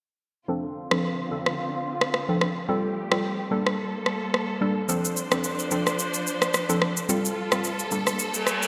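A hollow, bouncy square-wave pluck with chorus and a lush, vibrato-rich studio string section open this romantic, breezy, lightly swung afrobeats excerpt over Dm7, Fadd9 and Gmadd9 chords, joined at 0.9 s by an up-front electronic rim click and shaker, with a filter sweep running throughout, a reverse cymbal entering at 8.3 s, and a bright 1980s-style digital sheen bathed in deep hall reverb.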